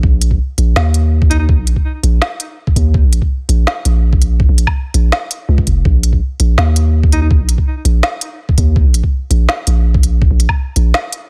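A deep, sine-like 808-style bass dominates this short half-time drum and bass excerpt in Bb minor at 165 BPM, its long, decaying notes sitting up front between F1 and Eb2 under a dark, spacious mood. A gritty, thumpy, pitched-down kick and a produced electronic kit with a woody snare, smooth hats and woodblock carry the groove with a touch of studio reverb and tape-toned character. A mellow alto saxophone appears only briefly at 1.3 and 7.1 seconds, offering a scooped, vibrato-laced jazz note on Eb4 trailed by digital delay.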